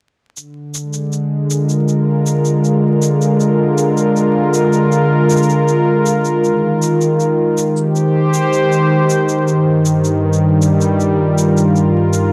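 A detuned sawtooth analog pad sits up front, its smooth, bright chords swelling in on a slow attack and shimmering with chorus as they move from Bb7 to Abmaj7 at 6.4 seconds and Ebadd9/G at 9.5 seconds. Beneath it, a soft electronic shaker with a tape-warm, small-room character keeps a straight 4/4 pulse. This playful folktronica fragment in Bb mixolydian moves at an unhurried 79 BPM, with light reverb and a dry, close 1970s-style studio sound dusted with vinyl crackle.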